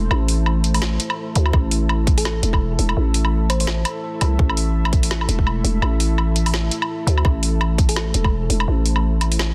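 A moody, sidechain-pumped ambient pad with chorus and reverb opens this tense, spacious half-time drum and bass excerpt in A minor at 168 BPM alongside a growling, buzzy 808-style bass up front, as a swung kit of woody snare, metallic hats and woodblock joins, a tight electronic kick punches in at 1.5 seconds, and a round, tine-like thumb-piano pluck with 12-bit grit, chorus and delay sits in the background at 2.2 and 7.9 seconds, all within a dense, heavily limited modern master.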